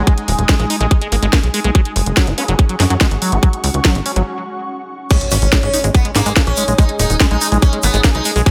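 A tight, overdriven electronic kick and a layered garage kit with a cracking snare, hi-hat and crash drive this hypnotic psychedelic trance excerpt at 143 BPM in a straight 4/4, with a punchy, funky plucky analog bass up front and a squelchy, resonant liquid acid bass riff pumping through phaser and delay. An ethereal, airy pad, a very quiet pulsing gated texture holding chords and a nasal vowel-sweep wobble bass that drops out at 2.6 seconds fill the background, all in a dry mix. After a brief break, the drop arrives at 5.1 seconds, bringing in a bright, buzzing sitar melody with shimmering sympathetic strings, a grainy egg shaker and a very quiet electronic impact.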